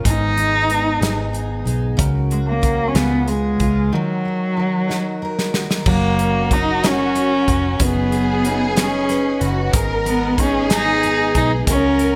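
Bright 1980s-style digital production with light reverb and a small room ambience frames this swaying, heartfelt pop ballad in six-eight, cut from a longer piece. Up front, a bowed solo cello carries the melody with a nasal, boxy voice, expressive vibrato and portamento, trailed by a digital delay. Beneath it, a jumbo steel-string acoustic guitar sits in the background, picked, full-bodied and double-tracked, while a direct-recorded clean electric guitar plays compressed arpeggios, shimmering through lush chorus and its own delay. A vintage foam-muted fingered bass adds a dark, round, punchy low end, and an airy, polished country drum kit, with a medium-tuned snare, punchy kick, hi-hat and crash, sits up front under gated reverb. A break arrives at 3.9 seconds, with a drum fill from 4.9 seconds, and at 5.9 seconds a close studio violin section enters with a second line, its bowed ensemble sound warm and expressive.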